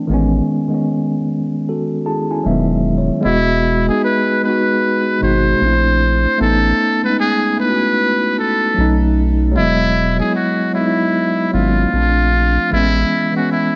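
Cosy and dreamy, this lo-fi hip hop piece, cut from a longer work, settles into an unhurried 76 BPM in 4/4 with a 16th-note swing, centred in E major. A mellow tine electric piano carries the accompaniment from the start, its clean tone heard through built-in speakers and softened by cassette tape character and a low-pass filter, while a deep, thick sub bass with a sine-like, saturated body and fast attack sustains underneath from 0.1 seconds. At 3.3 seconds a trumpet with a metal mute enters as the solo voice, playing in a jazz style with a buzzy, breathy, thin edge and a soft attack, its brilliance tamed by a low-pass filter. The harmony drifts through lush extended chords such as Amaj9#11, Emaj9 and B7, with an A#maj9#11 adding a dreamy lift before returning to Amaj9. The whole mix sits in a small room with light reverb and the worn, warbling pitch drift of old cassette tape, giving it a nostalgic, hazy glow.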